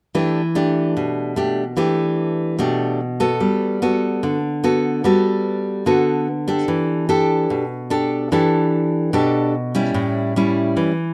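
Bossa nova excerpt, breezy and sophisticated, with a solo nylon-string guitar sitting up front, fingerpicked in a classical manner with bright, full-bodied fresh strings and audible finger squeak, moving through rich chords from Em11 to Gmaj9, Em7 and A7 in light reverb over about 11 seconds.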